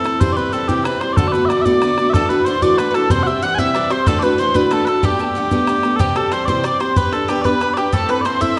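Bathed in a wet recital-hall reverb with a softened top end, this cheerful, bright Celtic jig in G major at 124 BPM in 6/8 puts sweet, vibrato-laden small bagpipes up front on the melody over a boxy, parlour-toned picked steel-string acoustic guitar and a boomy, close bodhran, while an airy, chiffy tin whistle sits distant in the background and a woody, double-strung mandolin joins at 2.1 s as a second line.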